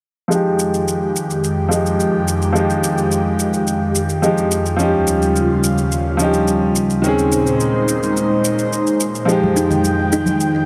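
Smooth and wistful, this short sunset chillout excerpt moves at 107 BPM in F minor, with a clear, boxy baby grand piano up front playing accompaniment through a low-pass filter sweep and digital delay, beside an airy, breathy pad of detuned sustained chords treated with chorus and phaser. A layered electronic shaker keeps time under a lush hall reverb as the chords pass from Fm9 through Eb9 and Bbm11 before returning to Fm9. Near the close, damped congas enter softly in the background at 9.4 seconds, and a woody, hollow kalimba adds short thumb-plucked arpeggios on Eb4 with digital delay from 9.6 seconds.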